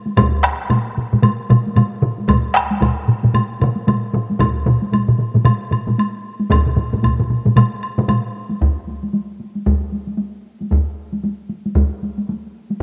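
Japanese traditional taiko drum ensemble music, powerful and ceremonial, moving at 114 BPM in 4/4 with a swung sixteenth-note feel, cut from a longer piece. Four taiko parts play together from the opening: two struck with hard sticks and two with heavy sticks, most of them close and up front, while one heavy-stick part sits dry in the background. A woody woodblock sounds in a small room alongside the drums. Around 8.2 seconds two of the taiko parts and the woodblock stop, leaving two hard-stick taiko parts to carry the closing passage from 8.6 to 12.8 seconds. A moderate spring reverb hangs over the mix, and the piece was captured as a home recording on cassette.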